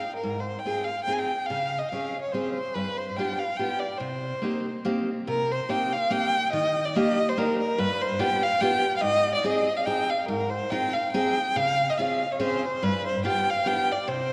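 Bathed in a deep concert-hall reverb with a 2.5-second tail, this dark, warm recording places a solo violin and a picked steel-string acoustic guitar up front in a musette waltz. It moves at 142 BPM in 3/4 with a gentle swing on the eighth notes, sits in C minor, and is tuned slightly low at A4 = 438 Hz, giving it a nostalgic, bittersweet mood. The bowed violin carries the melody between Bb4 and Ab5, its expressive line colored by vibrato, sliding portamento and a smooth top end. Beneath it, the guitar supplies an accompaniment from G2 to Ab4 with an auditorium-style acoustic body. The harmony cycles through Ab6, Dbmaj7, G7, Cm7 and Ebmaj7, with the same phrase returning at 5.3 seconds. Both instruments play throughout this 14.3-second fragment cut from a longer piece.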